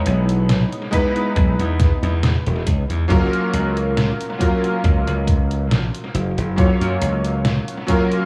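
A bright, clangy electric grand piano opens this dreamy, woozy vaporwave excerpt in F# major, its chorused, gritty chords drifting through analog delay over Emaj7 and F#maj7 at a slow 69 BPM with a light sixteenth-note swing. A punchy, glassy slap bass with tube saturation and a detuned 8-bit drum machine's hi-hat and medium-tuned snare join at 0.1 seconds, and a thumpy electronic kick arrives at 0.9 seconds. The echo-heavy mix carries a cassette-tape haze and small-room ambience, with the piano, bass and snare sitting up front.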